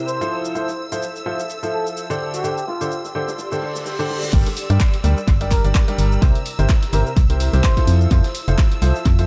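A breathy, bucket-muted trumpet sings a veiled, jazz-style melody with vibrato and scooped notes over a soulful, bittersweet piano house groove at 127 BPM in G dorian, where a clear, woody, slightly detuned upright piano riff with analog delay, shimmering vintage string-machine violins and an ethereal airy pad all pump against the sidechain, while a punchy analog drum machine's cabasa, claps, hi-hat and crash sit above a faint, gritty garage kit's hi-hat and snare, and a reverse cymbal at 3.6 seconds ushers in the drop at 4.3 seconds, bringing a hollow, dark organ-like FM bass and an up-front, tape-warm electronic kick into an echo-heavy mix.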